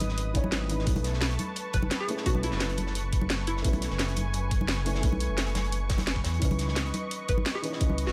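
A straight 4/4 groove at 173 BPM drives this dreamy, soulful liquid drum and bass excerpt, where a knocking electronic kick and a layered kit with cracking snare and bright hats lead over a gritty, saturated breakbeat kit and close, dry congas tucked in the background, while a deep, rumbling detuned saw bass sits up front, a warbling, chorused unison pad and a soft, felt-muted upright piano with audible action noise and tape echo move through C#m9 and B9sus4, and a hollow, bouncy square pluck with lush chorus, cassette tape character and tape echo appears from 1.7 to 3.8 seconds and again at 7.3 seconds, all under a light reverb.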